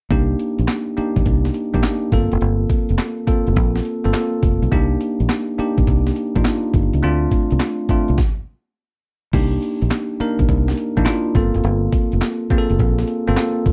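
A dry, close 1970s-style studio sound frames this bouncy, slick new jack swing R&B excerpt in C dorian at 104 BPM with a swung 16th feel, where a gritty, overdriven breakbeat sampler-style kit with thumpy kick, medium-tuned snare, handclaps, hi-hat and crash sits up front beside a punchy, foam-muted fingered electric bass and a bell-like, bright tine electric piano moving through Cm9, Gm11 and Dm7, with a stop from 8.2 to 9.3 seconds before the closing section.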